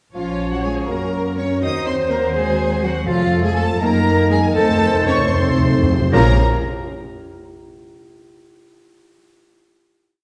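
Dramatic and urgent, this short, complete classical-period movement for symphony orchestra moves in a lilting 6/8 and slows down as it heads toward its close. A rich violin section carries the melody with smooth, even vibrato, while a second, clearer and more focused violin section doubles the tune at the octave from the background, joined in that doubling by a soft-attacked clarinet and a distant cello section. A viola section adds a counter-melody and sustained chords, and a pure, expressive flute with lifted highs, a roomy bassoon and a mellow French horn section fill in held harmonies, the horns also playing chords in the rhythm of the tune. Up front, the double bass section anchors everything beneath with sustained bass notes. Timpani enter at 3.1 seconds with articulate hard-mallet strokes on the bass notes, rolling into louder sections and playing a fill from 4.6 seconds into the final chord at 6.1 seconds. 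The orchestra sounds set back in a reverberant scoring stage.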